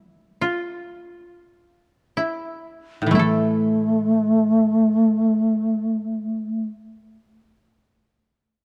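Still and solitary, this brief excerpt of Japanese chamber music in free time opens with a mellow, woody koto playing a second line alone, slowing down over its first 3.1 seconds. A second koto enters beneath it as accompaniment, and at 3.1 seconds an airy, hollow shakuhachi takes up the melody up front with vibrato and a breathy chiff, while taiko drums struck with hard sticks sound briefly in the background until 4.0 seconds. Light reverb and a dark production give the whole a hushed, intimate cast.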